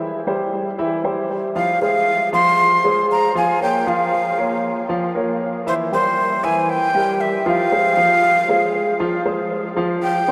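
A straight 4/4 Latin pulse at 117 BPM carries this short, nostalgic excerpt in F harmonic minor, where a concert grand piano with deep bass and an open tone rolls out arpeggios from the start, moving through C, Fm, Bbm and C7 before settling on Fsus2 at 9.8 seconds. At 1.6 seconds a breathy metal jazz flute enters up front with the melody, its straight tone, soft attack and lifted highs giving an expressive, warm voice, and both instruments carry analog delay. The whole dreamy mix is soaked in a huge ambient reverb that lets every note hang in the air.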